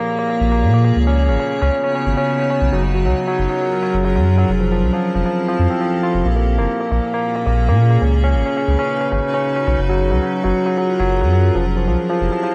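An icy, crystalline glass pad holds sustained chords with chorus and a grainy 12-bit sampler grit, while a barky, clean tine electric piano runs delayed arpeggios through a combo amp in this melancholic, intricate IDM passage cut from a longer piece. A round, deep sine sub bass joins at 0.4 seconds, anchoring the cycle of Bbm7, Db7sus4, Gbmaj9 and Fmaj7. The whole mix sits in light reverb with the worn, warbling pitch drift of old cassette tape.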